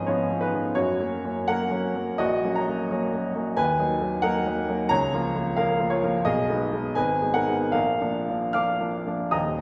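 In a flexible two-beat metre, the playing stretches and gives with a rubato feel that lends this romantic character piece for solo piano its passionate, brooding mood. The single upright piano carries everything from 0.0 to 9.6 seconds, ranging from a deep Eb1 up to F6, with a woody, polished tone and long sustain that sits up front. A concert hall reverb of about 2.0 seconds surrounds it, and the room is heard from further back, giving the sound a wet, spacious halo. The harmony opens on C#7 over G#, settles onto F#, then darkens through Ebm, Bbm and Abm before arriving on Bb. The passage is cut from a longer piece and unfolds as a single section.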